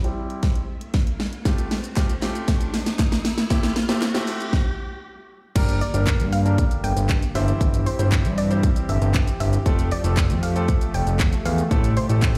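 A clear, polished baby grand piano opens this energetic, confident dance-pop excerpt at 117 BPM in G dorian, its sound low-pass filtered and pumping as a filter sweep runs through the build-up, while an electronic pop drum kit with a punchy kick and fat snare plays a fill and an electronic riser sounds beneath. A very quiet, hollow group handclap joins at 2.0 seconds, and after a brief stop the drop lands at 5.6 seconds. There a saturated, nasal, detuned sawtooth analog bass sits up front with a sidechained pump, and a smooth analog pad with chorus holds sustained chords in the background, also pumping. Moments later a soft, round pluck with chorus and delay adds a dark, gentle melody above the chords of Gm, C/G, Fadd9 and Am7. The mix carries little reverb yet sounds as if played on a big sound system in a bare stone room.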